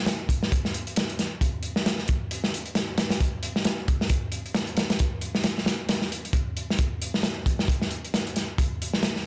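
Dry, saturated and gritty with a rolled-off top, this short clip of funky, energetic breakbeat puts a crunchy acoustic drum kit up front, its tight kick, medium-tuned snare and hi-hat sitting mid-forward in a studio room and riding a swung sixteenth-note feel.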